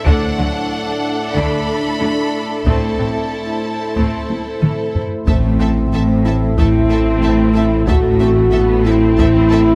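A mellow French horn section carries sustained chords at the front of this tense, futuristic stretch of a hybrid orchestral and electronic film score. A taiko ensemble, struck with hard sticks in a small room, drives the straight 4/4 pulse and plays a fill from 4.3 seconds. Above them, a distant symphonic violin section sings an intense, lush melody with vibrato, while a close, focused studio violin section adds a second line and a studio viola section fills in the accompaniment. Rich cellos and double basses hold the bowed bass in the background, joined by a clear trombone section on sustained chords until 4.9 seconds, and from 5.3 seconds a deep, thick, saturated sub bass settles on a low A. A round, tine-like synth pluck resembling a thumb piano threads gentle arpeggios through the orchestra with chorus and delay, and a warbling, lo-fi tape-like pad with chorus and built-in reverb sustains nostalgic chords behind it all as the harmony moves from D to A minor, captured with close, detailed microphones and light reverb.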